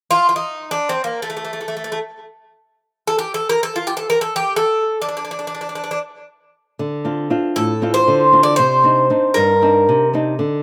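A dry, outdoor sound with a close, up-front presence frames this brooding, cool Greek folk excerpt in free time and D phrygian, where a bright, metallic bouzouki picks the melody alone on its double, partly octave-doubled strings from 0.1 seconds until a dark, small fingerpicked nylon-string guitar with slapback echo enters at a lower level at 6.8 seconds, outlining Dm7 and then Cmadd9.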